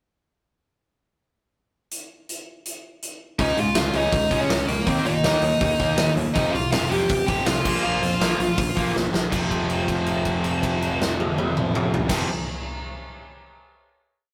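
A dark, overdriven lead guitar sits up front, stating a motif-based melody from 3.4 to 8.9 seconds that is partly doubled in octaves. This raw and urgent punk rock piece opens with a big acoustic drum kit alone in a pickup bar at 1.9 seconds, its bright cymbals, punchy kick and medium-tuned snare pushing a fast punk groove. At 3.4 seconds two electric guitars enter in the background, one cranked and overdriven, the other tight and distorted, both chugging palm-muted eighth notes beneath the lead. A growly, direct electric bass drives eighth notes alongside them, moving through chords of Db, Eb5, F5 and Bb5. A drum fill leads into a held F5 final chord at 9.3 seconds that rings to the close. The rough rehearsal-room sound carries tube saturation and a moderate studio reverb.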